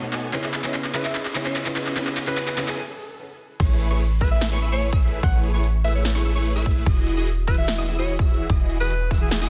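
This excerpt opens on a felt-muted upright piano, soft and intimate with audible action noise, beside huge, detuned supersaw chords carrying a phaser, sidechain pumping and digital delay, in a lush, euphoric future bass piece at 147 BPM in a half-time feel in A lydian. A big-room dance drum kit with crisp hats, a punchy, soft-clipped snare, handclaps and crash cymbal runs a fill through the build-up while a very quiet riser sits underneath and a breathy alto saxophone enters with a jazz-style melody, light vibrato and dub echo. The piano drops out at 2.7 s, and after a brief break the drop lands at 3.6 s, moving from C#m7 to Amaj9. There a punchy, up-front electronic kick and a deep, boomy 808-style sine bass arrive, joined by a bright unison pluck playing high arpeggios with a filter sweep, set back in the mix. The harmony shifts to Emaj9 at 6.9 s under light reverb and digital ambience, with a dense, heavily limited modern master.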